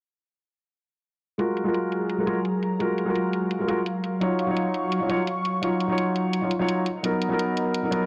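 Liquid drum and bass at 170 BPM in 4/4, this lush, dreamy excerpt sits in F# major with a light swing on the sixteenths. A felt-muted upright piano carries the accompaniment up front, its soft, mellow, intimate tone dulled by a low-pass filter and trailed by tape echo. Behind it, a detuned sawtooth pad holds sustained chords with a gentle attack and a bright edge, colored by chorus, tremolo and vintage 12-bit sampler grit. An overdriven, layered electronic hi-hat sits low in the mix, softened by its own low-pass filter. Piano, pad and hats all come in at 1.4 seconds, and filter sweeps move across both the piano and the pad as the harmony drifts from F#maj9 to D#m9/F# at 4.0 seconds and on to Bmaj7. A moderate concert hall reverb with a small-room ambience wraps the whole texture in a soft glow.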